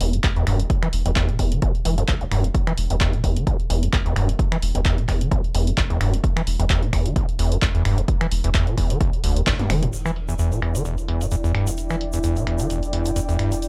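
Hypnotic and gritty, this acid house excerpt moves at 130 BPM in E minor with a 16th-note swing. An up-front, squelchy square-wave acid bass with analog delay drives the riff from E1 to E3, its resonant filter sweeping over a deep, thick sine sub bass that pumps against the sidechain. A punchy, tape-tinged analog drum machine carries crash, hi-hat, toms, handclaps and finger snaps through low-pass filtering, while a separate electronic kick pounds until 9.6 seconds, when a drum fill leads out of a band accent. At 9.9 seconds the harmony settles on Em7 as a dark, detuned sawtooth pad hums in the background and a warbling, nostalgic lo-fi pad drifts between E4 and G5 with chorus and its own reverb. A grainy, bright tube shaker joins there too, and a filter sweep on the drums runs through to the end, all set in a light reverb.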